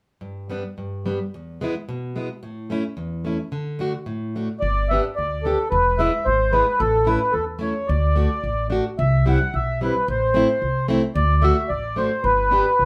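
A small, wet room surrounds this bouncy, jolly alpine folk dance, heard from further back, with each instrument still sitting up front. At 110 BPM in a straight 2/4, in G major and tuned slightly high at A4 = 442 Hz, a picked, plugged-in steel-string acoustic guitar with a parlour character opens alone at 0.2 seconds, cycling through G, E, A and D. At 4.6 seconds a mellow accordion takes the melody, reedy and dark with slow beating and a smooth tone-chamber voice, bathed in plate reverb. An upright bass enters at the same moment, its pizzicato low notes woody and steel-strung beneath the harmony. The second passage moves on through C, Am and D before settling back on G, with the guitar dropping out at 12.6 seconds just ahead of the close of this fragment cut from a longer piece.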